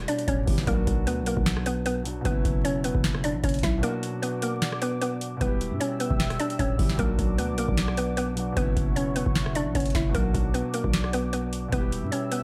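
Vinyl crackle sits over a digital ambience in this eerie, brooding trap excerpt, which moves with a half-time feel. A booming analog drum machine sits up front with a deep kick, crisp snare, metallic hats and rim clicks, its tape-warm sound re-recorded in a small room. Beneath it, a growling, buzzy 808-style bass carries the low end, while a concert grand piano plays filtered accompaniment with audible action noise and long sustain. The lead is a woody, round, mallet-like FM synth pluck, warbling with chorus and digital delay and placed up front. During a short break that begins at 3.8 seconds, a dark, detuned analog pad enters at 4.2 seconds with sustained chorused chords, as the harmony cycles through Em, Bm and F#7sus4.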